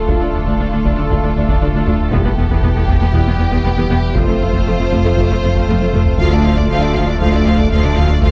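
A lush, vibrato-rich violin section carries the melody over a softer second violin line in this vast, relentless excerpt of a hybrid orchestral and electronic film score at 118 BPM in D dorian, where clear violas, dark distant French horns, focused cellos and smooth double basses sit in the background beside a vintage, warbling analog pad with chorus, a gliding sawtooth synth bass riff, a deep sine sub bass and a heavy-stick taiko ensemble that plays a fill from 5.7 to 6.2 seconds, all moving through Dm, Em, F and back to Dm in a lightly reverberant, closely detailed sound.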